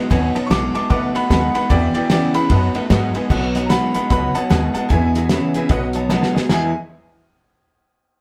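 Captured live in one room with moderate reverb, this upbeat, retro rockabilly snippet swings along as a twangy, slightly broken-up electric guitar through a small old amp plays the riff over a thumpy pizzicato upright bass, a dry, thuddy cloth-damped drum kit up front with a fat snare and dark cymbals, a full-bodied picked steel-string acoustic guitar in the background and a detuned, jangly honky-tonk upright piano, while a brilliant, woody bright upright piano carries the melody from 0.5 s onward, and a drum fill arrives at 6.1 s.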